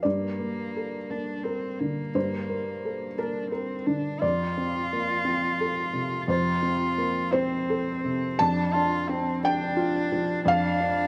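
Melancholic and reflective, this short neoclassical passage for piano and strings drifts in a rubato 6/8, cut from a longer piece. A felt-muted upright piano carries the accompaniment across its full 11.1 seconds, its mellow, short-sustained tone sitting up front with audible action noise. A single bowed cello, played sul tasto with light vibrato and a soft attack, adds an intimate second line a little quieter than the piano, all in a close, detailed recording with light reverb.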